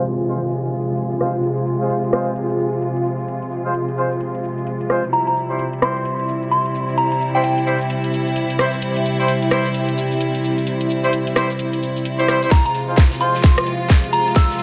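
A swung sixteenth-note groove drives this bouncy, swaggering bass house cut, carried by a garage drum kit with a cracking snare, metallic hats, rim clicks and shaker, all tape-warm and up front in a small room. Beneath it, a biting, earthy string section holds sustained chords on F minor and C while a punchy horn section fires tight stabs with light vibrato, both pumping against the sidechain and pushed through filter sweeps and delay on the horns. A deep, moody pad of detuned sawtooth and sub-octave sine rises slowly and lingers under chorus and its own reverb, and a very quiet electronic downlifter falls away over the opening moments. A soft, warbling FM bell melody floats in at 5.1 seconds, then returns at 12.5 seconds as the piece builds up with a drum fill, a tight, layered electronic kick and a very quiet acoustic kit with a mid-forward snare. A lush hall reverb wraps the mix, which feels like a passage lifted from a longer track.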